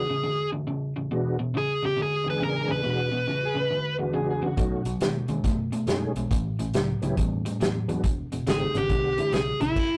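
Swaggering and laid-back, this electric blues shuffle in E mixolydian swings at 139 BPM as a clear tonewheel organ with slow rotary speaker and chorus vibrato and a crunchy, overdriven picked guitar riff open beside a dark, smooth overdriven lead guitar melody; a slightly broken-up slide guitar adds a brief second line from 3.3 seconds, and a round, foam-muted electric bass and an up-front vintage drum kit with a punchy kick and a rolled-off top enter at 4.6 seconds under B9, A9 and E9 chords, heard in a rough rehearsal-room recording with light reverb and tube saturation.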